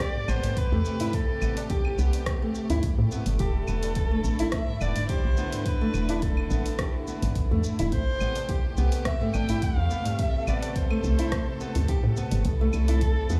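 A rich, expressive kamancheh sings a bowed melody with vibrato, portamento and tape echo over fingerpicked nylon-string guitar arpeggios, smooth sustained studio strings, a woody, round FM bass up front, a deep electronic kick, a deep house kit of claves, hi-hat, rim click and shaker, and a low-tuned tabla in the background, in this earthy, meditative organic downtempo excerpt in A minor at 106 BPM with a gentle swing, moving from Am7 through E7sus4 to C6 in a large studio reverb.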